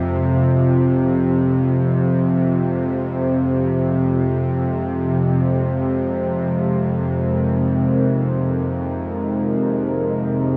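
A tense, string-like bowed drone sits up front from the first second, with vibrato, while a deep, moody pad of detuned, ring-modulated chords spreads around it with chorus and a sub-octave weight. This dark ambient drone piece feels cavernous and dark, soaked in a cathedral-sized reverb. The pad fades out across this 10.6-second fragment of a longer work.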